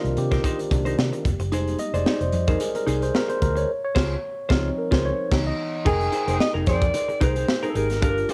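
A bright, clean tine electric piano opens this short cut from a longer polished 1980s jazz-funk pop piece, taking a solo through the first 5.9 seconds with subtle chorus, plate reverb and a cassette-tape tint, over chords moving from Cm7 through Fm7 and Dbmaj7 to Dbm7. Beneath it, a dark, round, foam-muted fingered electric bass sits punchy and amped, while a clean, compressed electric guitar plays a picked riff bathed in lush chorus. The crisp fusion drum kit sits up front in a small, pumping room, with a high-tuned snare, tight kick, hi-hat and crash driving a 111 BPM groove with a light sixteenth-note swing, and very quiet, high-tuned, damped congas add hard-handed, saturated colour until 3.6 seconds. The band hits accents from 3.7 to 5.9 seconds, and then a breathy, roomy alto saxophone enters at 5.9 seconds with a subtone jazz melody and vibrato over Fm11, briefly joined by a mellow, distant horn section with tape echo in the background. 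The mood is bittersweet and urban, with the soft haze of a cassette home recording.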